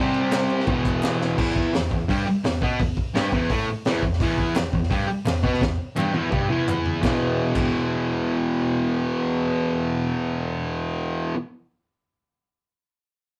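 Captured as a band playing live in one room with moderate studio ambience, this raw, gritty garage rock excerpt in E minor at 170 BPM puts a double-tracked, compressed fuzz guitar up front with a distorted riff throughout, while a saturated breakbeat drum kit with a punchy kick, high-tuned snare and dark cymbals drives until 7.7 s, with fills at 1.2 s and from 5.6 s, and crisp, dry group handclaps sit in the background.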